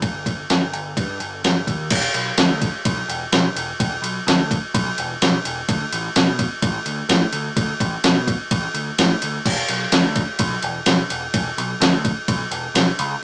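This is a rock excerpt in the shoegaze and dream pop vein, with a blissful, hazy mood and a straight feel in four. A sampler-style 12-bit drum machine sits up front, its thumpy kick and fat snare joined by crash and ride cymbals, all pushed through overdrive and re-recorded in a small room. Beneath it, a growling picked electric bass plays low, from E1 to B2, with a bright, direct and amped tone that is also overdriven, set well behind the drums in the mix. Both parts play from the opening to about 13.1 seconds, and a short opening passage gives way to a longer second section at 1.9 seconds. The whole recording has a rough rehearsal-room character, with tube saturation, a small-speaker sound and a moderate booth ambience.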